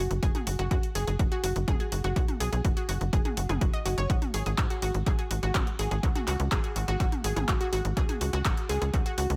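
A detuned unison pluck plays lush sawtooth arpeggios over a tight, nasal sequencer bass from the opening moment, both pumping against the sidechain while the pluck trails tape echo, as the chords move from F#sus2 to G#7sus4 at 4.1 seconds. This driving, dramatic melodic techno excerpt runs at 124 BPM in a straight 4/4, anchored by an up-front, punchy analog kick with a tape-like body. An overdriven, layered deep house kit adds handclaps, hi-hat and toms soaked in dub echo, all set in a digital, echo-heavy space.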